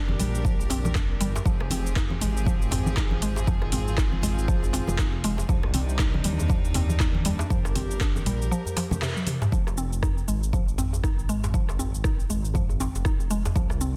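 A warm, hypnotic afro house groove at 119 BPM in 4/4, with a 16th-note swing and an F dorian color, this excerpt opens straight into a drop over a chord cycle that moves from Gm to Fm, Cm and back to Gm. A deep, rumbling detuned saw bass, dark and saturated with a beating edge, sits under everything and pumps with the sidechain, alongside a woody, round mallet-like synth pluck playing arpeggios through chorus and digital delay. A rich chamber string section holds sustained bowed chords with light vibrato and an earthy closeness until 9.5 s. The electronic kick is deep and tape-tinged, while an afro-pop drum kit adds handclaps, metallic hats, rim clicks, shaker and toms, with bright, thin-skinned congas and a tight, cracking djembe tucked in the background. A band accent and drum fill around 9.0 s lead into a sparser second section on Fm, where the strings and congas have dropped away, all set in a digital ambience under a dense, heavily limited modern master.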